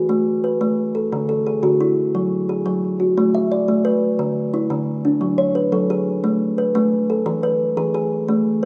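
A solo kalimba, woody and hollow with a ringing, band-limited tone placed up front, carries this rippling, warm southern African traditional piece in A major at 117 BPM in a straight 12/8, moving through suspended and open chords across a range of D3 to E5 before a new passage arrives at 6.2 seconds, all set in a lush hall reverb on a rough home demo mix with lossy artefacts, cut from a longer performance.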